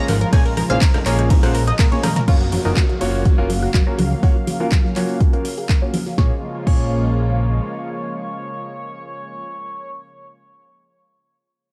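A dreamy, expansive progressive house excerpt opens on a drop where a lush, nasal unison pad, a tight, wave-folded sequenced synth arpeggio and clear concert grand piano stabs pump over a fat, detuned analog bass, an up-front electronic kick, a deep house kit with punchy snare and overdriven metallic hats, background electronic rim click and congas, and a gritty, pitched-up breakbeat kit, before a drum fill at 1.9 seconds leads into filter sweeps on the arpeggio and piano alongside a very quiet downlifter from 2.3 seconds, the drums dropping away by 6.8 seconds as the pad, synth and piano carry on in a dark production.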